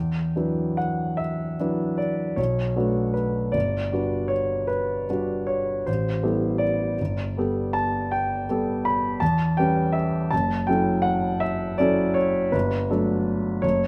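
A clear concert grand piano opens alone on an Em9 chord, setting a mysterious, nocturnal mood in an impressionist classical style. The tempo sits around 54 BPM in dotted quarters within a 9/8 metre, with uneven beats and a free rubato feel, and the instrument is tuned slightly low to A4 = 436 Hz. The piano spans from F#1 up to B5, its deep bass anchoring the harmony while the sound stays intimate and up front, with audible action noise adding a natural, close presence. Moderate reverb from a stone room, lasting about 1.3 seconds, gives the notes a soft halo. The harmony drifts through Bm9, Gmaj7, Am9 and Gadd9, then moves to Em6 at 9.2 seconds and F#m7 before settling on Gsus2 at 12.5 seconds, where this passage, cut from a longer piece, ends at 13.9 seconds.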